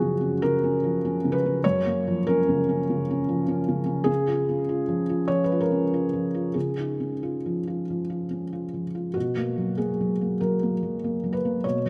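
A soft, intimate recording of a felt-muted upright piano, its thick felt giving a dark, mellow tone, with audible action noise and the instrument placed up front in a moderate concert-hall reverb. This short excerpt of neoclassical minimalist piano unfolds in a tender, peaceful mood with a rubato feel in 4/4, the solo piano ranging from F#2 to C#5. The harmony moves from F#maj7 to C#add9 at 4.1 seconds and settles on B5 at 9.2 seconds.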